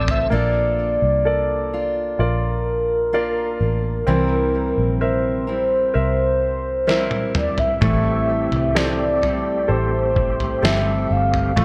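A mellow, horn-like synth lead carries the melody with a soft attack and sustained, rounded tone, its chorus adding a gentle shimmer over this emotional, hopeful pop ballad at a slow 64 BPM in 4/4. Beneath it, a clear concert grand piano plays polished accompaniment with short sustain, while a fingerpicked steel-string acoustic guitar adds full-bodied arpeggios touched with delay. A dark, foam-muted electric bass sits up front with a round, punchy tone. A compressed, pitched-down trip hop drum kit with a thumpy kick and muffled character plays brief fills at the opening and again at 6.9 seconds, then stays in through the end. A reedy, lightly overdriven tonewheel organ with key click and fast rotary speaker sounds briefly at the very start and returns in the background from 7.8 seconds as the harmony moves from Bbmaj7 through C7 to Am7, all set in light digital ambience in this short cut from a longer piece.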